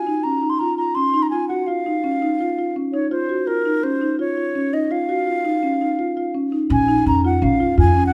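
Contemporary instrumental chamber music in an uneven 5/4 meter, this excerpt moves at 167 BPM with a straight feel and an urgent, hypnotic mood. A bright baroque flute carries the melody from the start, its wooden, airy straight tone marked by a crisp attack and lifted highs. Beneath it, a marimba played with soft mallets on padauk bars supplies arpeggios from 0.1 seconds, sounding round, mellow and mid-forward. At 6.7 seconds the harmony shifts from Dbadd9 to Bbm7 as an upright bass joins with plucked steel strings, giving a woody, acoustic low end for the closing moments. All three parts sit up front in a moderate recital hall reverb, and the passage is cut from a longer piece.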